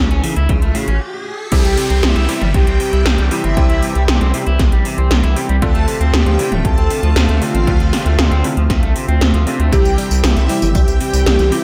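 Synthwave at 117 BPM in a straight 4/4, this cinematic, driving passage is cut from a longer piece and moves through the chords A, C, Dm7 and back to C. A punchy, overdriven electronic kick and 80s electronic pad drums, with gated reverb on the snare and toms and metallic hats alongside crash, tambourine and toms, push things forward beneath a round, deep analog bass that sits up front with sidechain pumping. A slightly broken-up, twangy electric guitar picks arpeggios through delay from the start until 9.7 seconds, while a riser and downlifter sweep in the background and a brief stop lands just before the second section opens at 1.5 seconds. From there a velvety, detuned synth lead carries the melody with chorus, tape echo and vibrato, joined by shimmering string-machine violins high above and clangy electric grand piano stabs, and from 2.3 seconds a lush, thick unison pad breathes with sidechain pumping. 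A clean, compressed electric guitar riff with analog chorus and delay flickers briefly at the top and returns at 9.7 seconds, all set in a light reverb.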